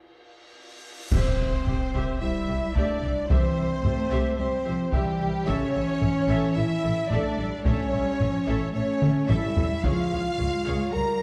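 An epic orchestral film-score cue, adventurous and triumphant in mood, taken from a longer piece in a straight four-beat pulse. It opens with a short break where a drum fill plays and a huge, bright cymbal swell builds into an impact at 1.1 seconds, met by a full-band accent and a dark, close crash of clash cymbals and concert bass drum. From there the full orchestra takes over: a lush, vibrato-rich violin section carries the melody, shadowed by a distant, very quiet second violin line and an airy, mellow flute line in the same register. Focused violas fill in the accompaniment while a prominent French horn section sustains the chords, and a distant double bass section anchors the low end, joined by expressive, soft-attacked cellos from 2.2 seconds. The heavy-sticked taiko drums pound on, with another drum fill near 9.0 seconds, as the harmony moves from C to A and then to Db. The production is dark and warm, set in a moderate scoring-stage reverb that gives the ensemble a grand, spacious weight.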